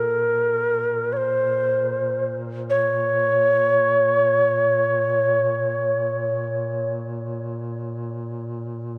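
Drenched in a long cathedral reverb with a decay of 6.4 seconds, this dark-toned production feels vast and hushed. It is a fragment of a Caucasian folk lament in free time, mournful and full of longing. Up front, a breathy bamboo shakuhachi carries the melody within a narrow span from Bb4 to Db5, its crisp attack and chiff softened by rolled-off highs and a gentle vibrato. Beneath it, a mellow duduk holds a low Bb2 drone in a folk style, its own vibrato giving the sustained tone a quiet, human waver. The shakuhachi falls silent at 6.9 seconds, leaving the duduk alone to sound on until 9.0 seconds.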